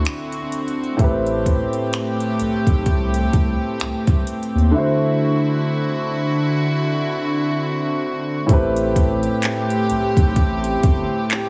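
A smooth, electronic R&B drum kit of finger snaps, handclaps, hi-hat and a soft kick sits up front in this sensual, longing contemporary R&B piece, moving at a slow 64 BPM in 4/4 with a swung sixteenth-note feel in A dorian over D9 and Am7 chords. A concert grand piano with deep bass and long sustain accompanies a bowed studio string section with light vibrato and a reedy, gut-string tone, the strings pumping under sidechain. A thick, saturated sine sub bass anchors the low end until 11.1 seconds, and the whole mix is heavily compressed like radio and bathed in concert hall reverb, cut from a longer piece.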